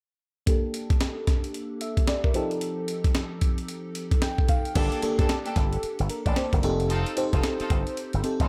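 A dry, close-sounding excerpt of punchy, slick new jack swing R&B in G minor at 112 BPM, swung on the sixteenths, opens with a lush, dreamy FM electric piano with a soft pad layer, chorus and phaser, and a gritty, compressed breakbeat sampler kit with a thumpy kick and medium-tuned snare. A filter sweep colours the piano through the first section, and it plays a fill at 4.0 seconds. At 4.8 seconds a bright slap bass through an envelope filter joins, along with a clear, focused studio string section playing bowed stabs with vibrato, as the Gmadd9 to F7 progression repeats.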